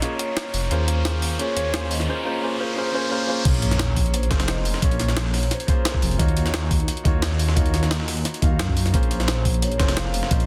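A dense, heavily limited modern master with light reverb and a faint mains hum frames this melancholic, dreamy excerpt of liquid drum and bass at 175 BPM in 4/4, set in Bb minor and moving through Bbm9, Ebsus2 and Ebm9 chords. A concert grand piano with long sustain and an open low end carries the accompaniment throughout, its tone roughened by vintage 12-bit sampler grit and trailed by delay. Over it, a soft-mallet vibraphone sits in the background with a metallic, ringing, mellow melody, slow motor vibrato and delay, resting briefly after 6.5 seconds before returning. A pitched-up, tape-warm jungle kit of crash, hi-hat and snare runs from the start beside an electronic riser and sub drop, while a dark, deep, rumbling detuned saw bass with tube saturation arrives up front at 0.5 seconds. The drop lands at 3.5 seconds, bringing in a thumpy, gritty electronic kick and a high-passed breakbeat kit with a bright-tuned snare, re-recorded in a small room and tucked into the background.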